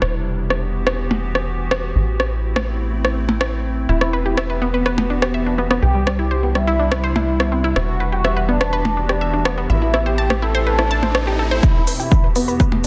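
A dense, heavily limited mix in a moderate hall reverb carries this cinematic, dramatic melodic techno fragment, where a morphing, warbling wavetable pad, a punchy sawtooth sequencer bass and a smooth-hatted, overdriven drum kit of hi-hat, rim click, shaker and percussion blips all pump under sidechain from the start, before a nasal, vibrato-laden synth lead with dub echo and a bright, detuned unison pluck arpeggio with digital delay arrive at 3.9 seconds, a background riser builds from 9.2 seconds, and at 11.6 seconds a heavy, overdriven kick drops in, joined at 11.9 seconds by a tense, swarming granular drone for the closing build-up.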